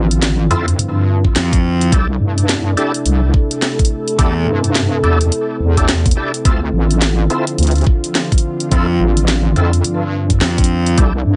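Lightly reverberant and rolled off in the highs, this gritty, funky glitch hop excerpt at 106 BPM, swung on the 16ths in D minor, moves from Dm9 to C69 and back, with a heavy, saturated wobble bass and a smooth analog pad with sidechain pumping holding the floor beneath a distant, airy pad with built-in reverb, a drum kit of cracking snare and bright hats, an overdriven tonewheel organ playing stabs with key click, slow rotary speaker, 12-bit grit and digital delay, a knocking electronic kick that enters at 1.2 s, and a round, fuzzed fingered electric bass that plays from 1.4 to 4.5 s and returns at 8.7 s.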